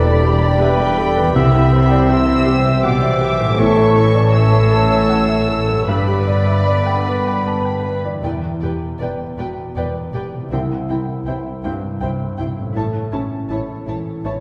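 Heard from further back in a reverberant scoring stage, this bittersweet, sorrowful cinematic excerpt in E minor moves at a rubato 80 BPM in 3/4. A dark, woody violin section carries the melody above a second, floating violin section, while a mellow flute ensemble, a lightly vibrato oboe and a roomy French horn section add lines and sustained chords until 7.9 s. A soft, felt-muted upright piano with audible action noise and a very quiet, ringing concert harp supply accompaniment and arpeggios beside an intimate viola section, as a close cello section and a bowed double bass section hold the bass.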